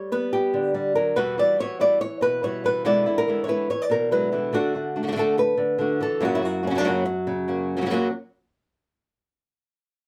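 A fingerpicked acoustic flamenco guitar opens alone, carrying a mournful yet fiery melody that ranges from low bass notes to bright upper lines. At 1.2 s a second flamenco guitar joins underneath with stabbed chords, sitting a little quieter than the lead, though both guitars stay up front. Both guitars sound warm, with audible finger squeaks along the strings, and a light reverb surrounds the pair. The harmony moves from G through E minor add9, E7 and D before landing on F#, giving the passage a restless, dramatic pull. The music shifts into a new section near 7.9 s, and both guitars stop at 8.1 s in this short cut from a longer piece.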